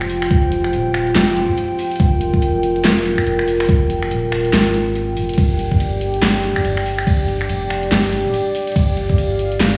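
Brooding and meditative, this deep dubstep excerpt moves at 142 BPM in a half-time feel with swung sixteenths, built on an up-front, detuned analog pad with a moving notch and chorus that shifts from an F5 chord to G5 at 5.4 seconds over a round, mellow sub bass. The drum kit sits forward with a huge snare, metallic hats, ride cymbal, handclaps and finger snaps, while a knocking, tape-warm electronic kick enters at 0.3 seconds and drops out at 9.2 seconds. A lush hall reverb and stony room ambience give the whole piece the feel of a big sound system filling a bare space.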